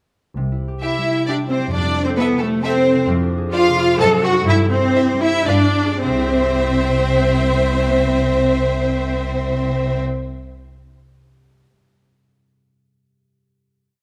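A ringing concert harp rocks through broken chords over plucked, up-front double basses from 0.4 s, and at 0.8 s the strings join in this playful, magical waltz-time film cue. Intense, vibrato-rich violins carry the tune doubled at the octave, rich violas double it in unison, and more distant cellos sing the melody too, while a focused second violin section adds after-beat chords and sustained chords. The music slows into a closing chord at 6.0 s, with the basses also bowing long notes, all in a close, detailed sound with light reverb.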